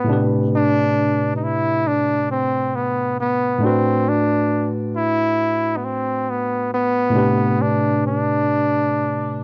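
A clear flugelhorn carries the melody up front, its soft attack, scooped notes and vibrato giving a jazz-inflected solo voice that stays within a narrow low range. Beneath it, a tine electric piano plays the accompaniment from start to finish, its worn, slightly out-of-tune tone coming through a combo amp and sitting close to the front of the mix. This brief cut from a longer R&B piece moves at a slow 68 BPM in 4/4 with a light sixteenth-note swing, and its mood is introspective and sultry. The harmony rests in A dorian, moving from Am11 to Bm7/A at 3.6 seconds and back to Am11 at 7.1 seconds. The sound is dry and close, in the manner of a 1970s studio recording with little reverb, so both instruments feel intimate and immediate.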